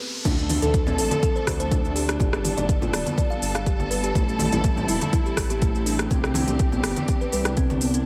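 An overdriven electronic kick drum leads this earthy, driving afro house cut from a longer piece. It sits deep and up front at 123 BPM in a straight 4/4, with a small-room tone to its thump. Around it, a produced afro-pop kit adds smooth, tape-softened hats, shaker, rim clicks, toms and crash. Bright congas sound distant, set back in a large room. A dark, detuned sawtooth bass rumbles low with a beating unison edge. A woody, hollow-toned kalimba plays close-miked arpeggios through tape echo, and a lush bowed string ensemble holds distant chords with expressive vibrato. The bass, kalimba and strings all pump against the kick as the harmony in D dorian moves through Dm, Gadd9, Am7 and Cadd9, with the full groove in place from 0.3 seconds.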